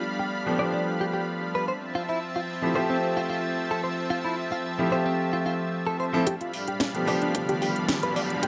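A straight 4/4 nu-disco groove at 111 BPM in G mixolydian carries a sunny, feel-good mood, as a brilliant concert grand piano with sidechain pumping and delay, a lush, detuned sawtooth unison pad with chorus and 12-bit sampler grit, and a clean, picked electric guitar riff with analog chorus, low-pass filtering and delay move between G7 and Fmaj7. At 6.3 seconds a build-up begins: a house kit with a cracking snare and metallic hi-hats comes up front over a punchy, tape-warm electronic kick set in the background, while a filter sweeps across the guitar. An electronic riser joins at 6.8 seconds, and light digital ambience surrounds this short cut from a longer piece.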